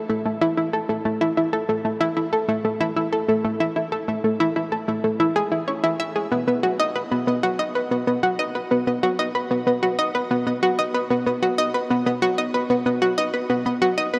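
Ambient music at 94 BPM in a straight 4/4, this cosmic, luminous fragment of a longer piece features a lone analog pluck, round and bright with a sawtooth and square-wave edge, a sub octave beneath, and a snappy filtered attack, sitting up front through chorus and delay between A3 and E5, all bathed in a huge, wet reverb that trails on for 8.2 seconds across its 14.2 seconds.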